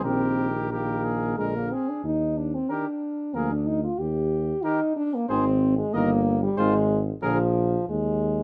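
A classical brass quintet excerpt in Eb major, moving at 92 BPM in a straight 3/4 with a triumphant, noble bearing under light reverb. A mellow, punchy trumpet carries the melody with a clear, softly attacked second trumpet beneath it, while a distant, very quiet trombone and an up-front French horn with light vibrato fill the accompaniment over a warm tuba bass with vibrato. The harmony moves from Ab through Eb/G and Fm7/Ab to Bb7, and the trumpets and trombone stop at 7.4 seconds, leaving horn and tuba to continue until 8.4 seconds.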